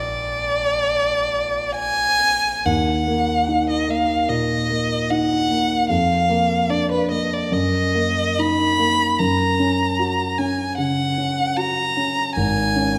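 An up-front single violin carries the melody high in its range, its warm, expressive tone shaped by vibrato, soft-attacked bowing and portamento in this elegiac, solemn romantic fragment in Eb minor. A dark, mellow concert grand piano accompanies it with deep bass at a rubato 74 BPM, and a new section begins at 2.7 s as the harmony moves from Eb minor toward Gb major. Both instruments sit in a reverberant recital hall that lends the duo a spacious, sombre glow.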